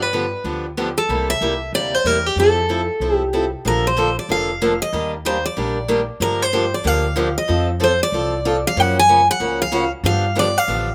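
A brisk swung 4/4 at 188 BPM drives this lively fragment of acoustic string swing, which moves from F major into Bb major at 3.7 s. A full-bodied jumbo steel-string guitar carries the melody up front with fresh-string sparkle and finger squeak, while a boxy parlour guitar picks the accompaniment from 0.1 s and a woody, thumpy, gut-strung upright bass plucks a dark low line beneath. The sound is dry and close, captured outdoors with little reverb.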